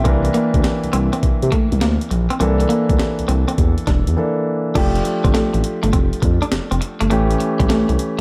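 A gritty, pitched-up breakbeat kit with a thumpy kick drives this bouncy, slick new jack swing excerpt at 102 BPM with a swung sixteenth feel; the drums drop out between 4.2 and 4.8 seconds, returning as the harmony moves from C13 to F69 and later A7. A smooth, wave-folded sawtooth synth bass glides underneath with portamento and vibrato, while an intimate concert grand piano with audible action noise and long sustain plays the accompaniment. A clean, twangy electric guitar riff with subtle chorus runs throughout, and the whole track carries light reverb and a digital ambience.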